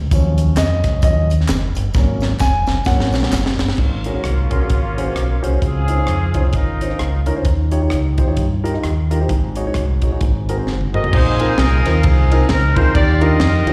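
This is an uplifting, jubilant stretch of uptempo gospel, cut from a longer piece and moving at 131 BPM in 4/4 with a swung eighth-note feel. A warm grand piano, touched with slapback echo, leads the opening over rich harmony that moves from Ebm9 through suspended Ab chords, while a deep, round fingered electric bass sits up front with a dark, punchy tone. A tight funk drum kit with a high-tuned snare and compact kick drives things forward, adding fills across the kit, and a close, dry layer of egg shaker, tambourine and group handclaps sits in the background until 3.7 seconds. At 3.8 seconds a mellow, vintage-sounding horn section takes the melody in a jazz style, its soft attack and light vibrato carried by slapback echo, before returning at 10.9 seconds as the chords move through Bb9sus4 to a closing Ebmaj9. The whole performance has the feel of a live gig heard through the venue's PA, with small-room ambience and a recital-hall reverb surrounding the band.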